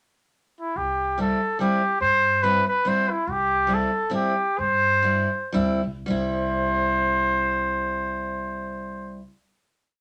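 An alpine folk dance tune in a lilting, swung triple metre, festive and jolly, played as a short complete piece by a small alpine dance band in a moderate studio room. A warm, classical-style trumpet carries the period-phrased melody up front from 0.6 seconds, with a thumpy, woody pizzicato upright bass on root and fifth at the main beats and a picked steel-string acoustic guitar entering at 1.2 seconds with up-front off-beat triad chords. The band slows down from 3.3 seconds before settling on a final chord.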